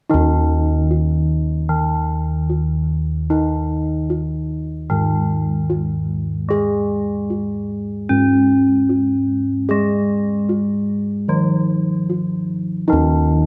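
Ceremonial and shimmering, this short passage of Javanese gamelan moves at 75 BPM in a straight 4/4, cut from a longer piece. A bronze metallophone carries the accompaniment from 0.1 to 13.5 seconds, its dark, ringing tone struck with a horn mallet and kept smooth and up front in the low-middle register. Bossed gongs hold the bass across the same span, reaching from deep Eb2 up to Ab4, with a round, beating bronze sound that has a boxy, small-room quality. Both parts sit close and present at an even level, their metallic bronze voices ringing out together. A moderate concert hall reverb with a 2.4-second decay lets the struck bronze hang in the air.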